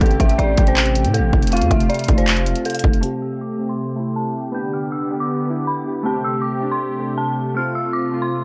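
A half-time trap beat at 159 BPM in A minor drives this melancholic, menacing hip hop clip, with a hard-clipped kick, bright hi-hats and handclaps up front alongside a growling, buzzy 808-style bass until both drop out near 3.0 s. An eerie, inharmonic FM bell carries the melody over warbling lo-fi synth keys and a smooth, vintage analog pad holding sustained chords, while a gliding portamento lead with vibrato hovers in the background for the first 3 seconds. Once the beat falls away, a filter sweep runs across the nostalgic keys through to 8.4 s as the chords move between Am7, G and F in a dark, dry mix.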